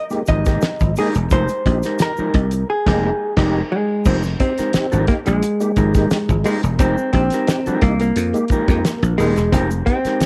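The thumbed slap bass sits up front, growly and punchy with a foam-muted bite, driving this sly funk cut at 88 BPM in F minor from 0.3 seconds onward. Beside it, a damped 70s drum kit of crash, hi-hat, kick and snare gives a fat snare and tight kick, its dark cymbals and rolled-off top colored by cassette tape. A vintage hollow-body jazz guitar carries the picked, compressed melody, dark and clean, also with a cassette tape tint, while a mellow electric guitar fills in fingered accompaniment underneath. In the background a tonewheel organ adds clear stabs with key click, chorus vibrato and a slow rotary speaker, and a grainy tube shaker sits close and dry. The piece opens on an Fm11, and the whole band hits an accent from 2.7 to 4.1 seconds, all in a light small-room ambience that feels like a home recording on cassette, cut from a longer piece.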